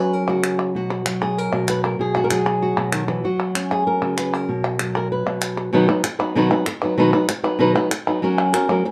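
A small room wraps this short, lively recording in a wet reverb, though both parts sit close and up front. It is a festive, fiery flamenco piece in B major, moving briskly at 193 BPM in a straight 4/4, and it is cut from a longer performance. A dark, fingerpicked flamenco guitar carries the melody from the very start, ranging from B2 up to B4. Crisp acoustic palmas hand claps join at 0.3 seconds and sit a little lower in level than the guitar. The harmony swings between F# and B, and at 5.7 seconds the piece moves into a new section that settles on B before returning to F#.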